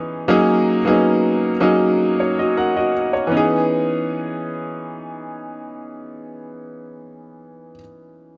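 A clear, intimate baby grand piano sits up front in a moderate plate reverb, its natural tone carrying audible action noise. This bittersweet, smooth soul fragment moves at 79 BPM in 4/4 with a straight feel in C# dorian, the solo piano spanning E3 to F#5 and running from 0.0 to 8.4 seconds. A G#9sus4 chord opens the first section before the harmony settles onto C#m9 at 3.3 seconds, in a short cut from a longer piece.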